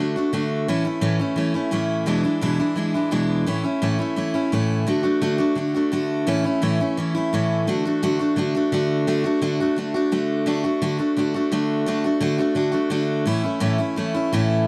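Country excerpt at a brisk 172 BPM in 4/4 and D major, where a lone picked steel-string dreadnought guitar, bright, full-bodied and up front with light reverb, carries an easygoing, sunny mood through changes from D to A and E7 over a dry, close 1970s-style studio sound, shifting to a second section at 4.9 seconds that lingers on D before closing on A.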